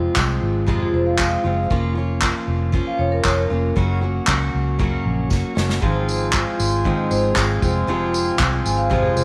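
Acoustic pop in Bb minor at 117 BPM, this short, tender and reflective excerpt moves in a straight 4/4 feel. A full-bodied, up-front fingerpicked steel-string guitar, with audible finger squeak, carries the accompaniment from the start, grounded by a dark, round, foam-muted electric bass. An airy unplugged kit played with bundle sticks joins at 0.2 seconds, its punchy kick, medium-tuned snare and handclaps sitting close, while a very quiet, jingly tambourine adds a faint vintage shimmer. A ringing, metallic vibraphone with the motor off carries a second line in two passages, and a reedy, nasal harmonium with a breathing quality enters at 5.8 seconds to hold sustained chords, just after a drum fill. The harmony moves from Fm through Bbm/F and Gb to Ab6 before returning to Fm, all bathed in a moderate echo-chamber reverb.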